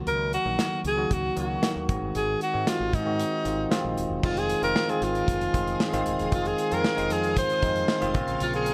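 1980s-style pop with a nostalgic, romantic mood, this short excerpt is led by a breathy, whispered alto saxophone with light vibrato and a touch of delay, sitting up front over a bell-like tine electric piano, a round, punchy fretless bass and a dark, smooth studio drum kit with a tight kick, crash cymbal and hi-hat. At 4.2 seconds a lush string machine enters in the background with slow-attack sustained chords and ensemble chorus, as the harmony moves from Ebm and Ab7 to Fm7 before closing on Bbmadd9, all in a light studio reverb.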